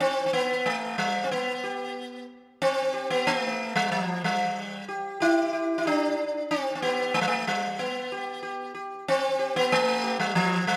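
A serene, meditative Indian classical excerpt moves at 93 BPM in a straight 5/4, cut from a longer piece and set in raga Khamaj on G, tuned slightly high at A4 = 441 Hz. A lone sitar carries the whole performance from 0.0 to 10.8 seconds, its plucked line ranging from F3 up to G4. The instrument sits up front, bright and round, with a buzzing edge and a shimmer from its sympathetic strings. The opening passage runs until about 7.8 seconds, when the phrase turns to a new section that carries through to the cut. A wet recital-hall reverb with a 1.7-second decay surrounds the sitar, giving the church or concert-hall setting a spacious, contemplative glow.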